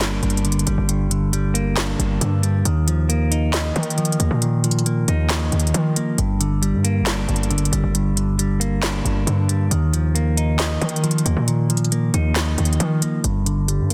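A clean, fingered electric guitar filtered through a low-pass, a punchy sine-based 808 with a noise layer, a fast attack and a decaying sound, and a crisp, tape-warm trap kit of sharp snare, handclaps and hi-hats all open this menacing, brooding half-time trap cut at 136 BPM in G minor, cycling between Gm and Ebsus2 before landing on G5 at 13.2 seconds, with light digital reverb and a dense, heavily limited modern master.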